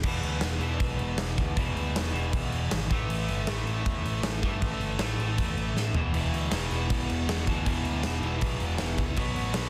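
A straight 4/4 beat from a big acoustic rock kit pushes this raw, aggressive punk rock excerpt, its tight kick, medium-tuned snare with soft clipping, crash cymbal and toms sitting up front with a bright stone-room character. A crunchy overdriven guitar riff moves through E5, A5 and B5 power chords over a growly, punchy picked bass. After a drum fill at 5.8 s, a distorted second guitar joins in the background at 6.1 s, and the whole mix is dry, dense and heavily limited.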